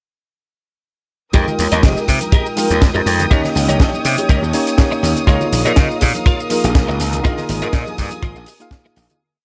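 Nu-disco with a sensual, groovy mood, this short piece sits in a swung 4/4 and drops straight into its full groove at 1.3 seconds, beginning a fade-out at 6.6 seconds. An up-front, dry acoustic kick holds a four-on-the-floor pulse, while a tight funk kit adds a high-tuned snare on the disco backbeat with shaker and closed and half-open hi-hats, both in a small room ambience, and bright, vintage-sounding bongos, tambourine and congas played with soft hands sit in the background. A gritty, overdriven slap bass, punchy and up front, drives a funky syncopated line. A clean, compressed electric guitar picks a close-voiced funk chord rhythm through ensemble chorus and dub echo, and a worn, slightly out-of-tune tine electric piano holds mellow drop-2 chords with syncopated pushes, also sent through dub echo and sidechain pumping. Above them, a distant, woody violin section bows dark, vibrato-laden sustained chords with a soft attack, its pad likewise pumping, as the harmony moves from Fm11 through Eb7 and Db69 to Bb7sus4 under a studio reverb.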